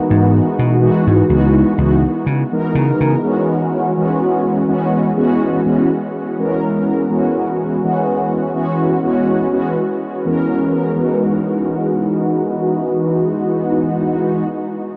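A slow, gently swung sixteenth-note pulse in four sets a drowsy, unhurried sway for this woozy, melancholic vaporwave fragment, cut from a longer piece. A punchy, amped slap bass joins up front a moment after the synth brass, then falls away after about 3.1 seconds. Dark, detuned synth brass carries the accompaniment throughout, its round sawtooth tone sustained under a filter sweep and colored by phaser, lush chorus and tape echo. The harmony drifts from C#m11 to F#9sus4 and settles on Emaj9 as a brief new section arrives at 11.0 seconds. An enormous, wet ambient reverb with a long tail soaks the whole dreamy mix.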